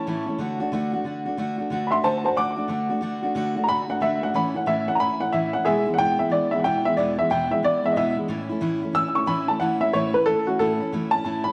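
A dark upright piano carries the melody up front, its woody, mellow tone and short sustain given a slapback echo, and it holds a solo from 0.0 to 10.9 seconds. This is a rowdy, rollicking rock passage cut from a longer piece, with a brisk swung eighth-note feel in four. Beneath it, a picked steel-string acoustic guitar plays accompaniment in a lower register, sounding full-bodied and jumbo-sized, with audible finger squeak. The harmony moves through D, A and E before settling back on A. An echo chamber reverb gives the pair a moderate sense of room.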